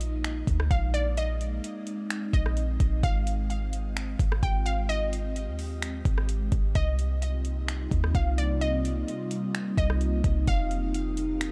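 This hazy, melancholic slice of atmospheric cloud-rap opens with a glassy FM pad holding slow-blooming, ethereal chords, treated with ensemble chorus, phaser, built-in reverb and a sidechain pump, over a deep, boomy 808-style bass and a smooth electronic R&B kit in a half-time feel. The bass is a clean, dark sine tone with a fast attack that decays, sitting up front beside the drums' knocking kick, metallic hi-hats, finger snaps and rim clicks. From 0.7 seconds a crystalline wavetable pluck joins with a bright, detuned digital melody pitched between D5 and G5, colored by a sub octave, a filter sweep, chorus and digital delay, and it drops out at 10.9 seconds. The harmony moves through Bb9sus4, Ab6 and Cm7 before landing on F7sus4, giving the loop a drifting, unresolved feel. The room itself is fairly dry, so the pad's mellow, full-bodied wash and the pluck's echoes supply most of the space in this fragment of a longer piece.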